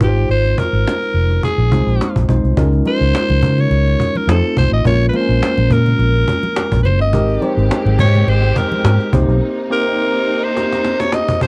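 A raspy, gritty alto saxophone leads this polished 1980s jazz-funk pop excerpt, sitting up front with a punchy, edgy pop-style solo line over an urban, nocturnal groove at 105 BPM in 4/4 with a light sixteenth-note swing. Beneath it, a worn, slightly out-of-tune tine electric piano supplies mellow accompaniment, its lightly overdriven tone thickened by lush chorus. A dark, round, foam-muted fingered electric bass is the most prominent part of the mix, driving the harmony through chords such as Db69, F7, Bbm7 and Abmaj9. A woody, band-limited cajon with faint snares and soft hands keeps time throughout, joined from 2.6 seconds by very quiet, damped congas with a bright, thin skin. A smooth, vibrato-rich studio string section enters at 7.1 seconds with sustained, expressive bowed chords. The bass drops out at 9.4 seconds for a break that ends on a drum fill, and the whole excerpt has light reverb and the sound of a home cassette recording.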